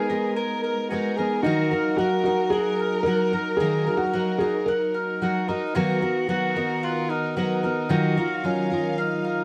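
A felt-muted upright piano carries the melody up front from 1.4 to 5.4 s, its soft, mellow tone marked by audible action noise, in this melancholic, intimate acoustic folk fragment in Eb minor at 112 BPM, where a shimmering, octave-doubled fingerpicked twelve-string guitar accompanies, a round-toned mandolin picks arpeggios, a distant, roomy soprano saxophone adds a dark second line with vibrato, and a chamber string section holds sustained sul tasto chords with a soft attack, all moving through Abmadd9, Ebm, Bmaj7/D# and Ebmadd9 under light reverb and close, detailed microphones.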